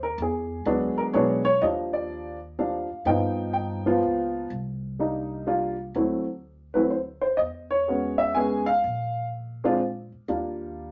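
An up-front, woody upright piano with short sustain carries the melody from the opening of this sophisticated swinging jazz waltz, joined by a warm pizzicato upright bass with steel strings sitting lower in the mix, both set in a wet studio reverb as the harmony moves through rich chords such as Ebmaj9, G7alt, Cm9 and E69 in this brief cut from a longer piece.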